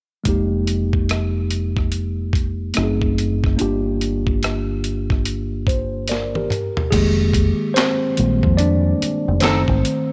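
Introspective and smooth, this neo-soul R&B excerpt from a longer piece settles into a relaxed 4/4 groove with a swung sixteenth-note feel. A worn, slightly out-of-tune tine electric piano sits up front with a mellow, clean tone, voicing chords that move from Fm11 through F#dim7 to Gm7. Beneath it, a deep dub fingered electric bass gives a dark, round low end, while a compressed, gritty boom bap sampler-style kit brings a thumpy kick, a high-tuned snare, handclaps, rim clicks, hi-hat, toms and crash. After a drum fill at 6.1 seconds, the electric piano takes a solo from 6.9 seconds as the harmony returns to Fm11. A hollow-bodied archtop guitar, dark and picked, adds a brief second line at 9.4 seconds, all under a light reverb.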